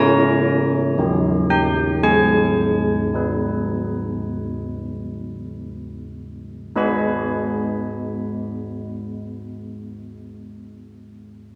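A wet church reverb with a 2.8-second decay surrounds old church bells that are close-miked, full and up front. This is a wintry, solemn classical excerpt for church bells in G# minor, in 4/4 with a straight feel, and its tempo moves between 47 and 60 BPM. The bells play alone from 0.0 to 10.8 seconds, ranging from D#3 to B5, with a bronze, clangorous tone, a minor-third overtone and audible beating, softened by a padded clapper. The opening passage slows down until 6.7 seconds, where a second section begins. The harmony moves from A#dim over C# to D# and settles on G# minor by 2.0 seconds.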